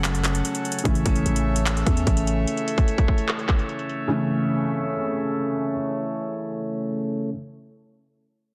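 Overdriven trap drums with a hard-clipped kick, metallic hi-hats and handclaps hit up front until 4.0 s in this triumphant, dreamy half-time hip hop excerpt at 148 BPM in A major, while a growling, buzzy 808-style bass with a fast attack and decaying notes drops out at 2.5 s, a felt-muted upright piano with audible action noise and a boxy, mellow tone plays intimate accompaniment, and a thick pipe organ holds romantic sustained chords moving from F#m to A beneath a filter sweep that begins at 0.9 s, set in light digital reverb within a dense, heavily limited master.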